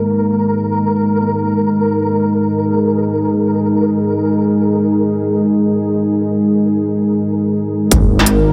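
Bathed in a lush hall reverb, this dark, spacious half-time drum and bass fragment in free time opens on a moody, up-front detuned analog pad with chorus and sidechain pumping, shadowed by a quiet, flickering grainy texture, until at 7.9 seconds an impact arrives with a distorted electronic kick, an industrial kit of clanging snare and crisp hats, a rumbling detuned saw bass and a very quiet sub drop.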